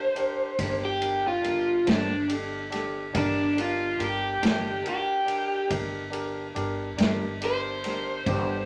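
Mournful and soulful, this slow blues in 12/8 at 47 BPM sits on G minor, with a raw garage guitar carrying an overdriven, phased, lo-fi solo up front from the first second while a concert grand piano with deep bass comps alongside it. A swinging big-band drum kit with a boomy kick, ride cymbal and medium-tuned snare enters at 0.2 seconds, sounding roomy and distant, and a woody pizzicato upright bass holds a low G from 0.6 seconds. A clean, compressed semi-hollow electric guitar with tremolo sits in the background between 1.9 and 7.2 seconds, all within a moderate studio reverb in this short cut from a longer piece.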